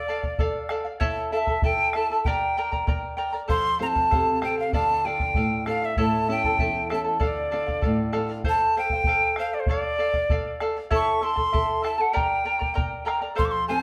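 An airy, bright cane quena carries the melody up front, its crisp, chiffy attack and expressive vibrato close-miked in this wistful yet festive Andean folk fragment in D minor, moving at 97 BPM in a straight 2/4. Shimmering double strings of the charango, some doubled at the octave, sit just as close alongside a round, dry bombo, while a flamenco guitar with fresh strings and audible finger squeak enters at 3.5 seconds, drops out at 8.4 and briefly returns at 13.4, both it and the charango fingerpicked. The band plays live together in a stone room whose wet reverb gives the sound a one-second tail.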